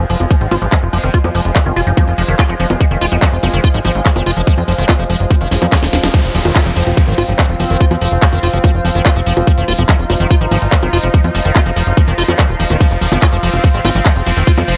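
A tight, overdriven electronic kick drives this alien, hypnotic psychedelic trance cut in F minor at 144 BPM, alongside a techno kit of cracking snare, metallic hi-hats, ride, handclaps and bongos, and a punchy, funky plucky analog bass with a wave-folded, ring-modulated bite. Above them a squelchy, resonant liquid acid bass riff rides a filter sweep and dub echo, while a bubbling stepped-filter texture holds sustained chords and a mellow, lo-fi warbly tape-like pad sustains a warm texture in the background, both chorused and pumping against the kick. A drum fill from 5.5 seconds leads into the drop at 6.1 seconds, where a faint downlifter descends in the background until 9.5 seconds.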